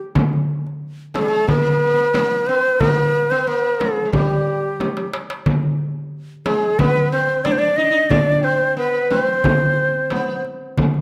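Crisp, compressed darbuka and a deep, distant frame drum open this festive excerpt of an Arabic maqam ensemble at 0.2 s, setting a straight 90 BPM pulse in 4/4. A plucked sitar enters at 1.1 s, and from 1.2 s a bright, airy ney with vibrato carries the melody up front, shadowed beneath by the sitar, whose buzzing, shimmering sympathetic strings form a second line. A drum fill at 4.8 s leads into the next section, all set in a recital hall reverb.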